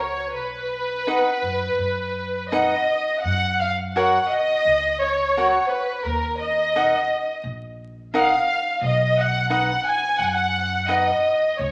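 A dark, bowed violin section with vibrato and a soft attack opens this festive, romantic mariachi fragment over woody pizzicato upright bass, joined at 1.1 seconds by crisp picked cavaquinho, all moving freely in rubato through a chord shift toward D-sharp minor, heard in a reverberant large studio beneath a layer of vinyl crackle.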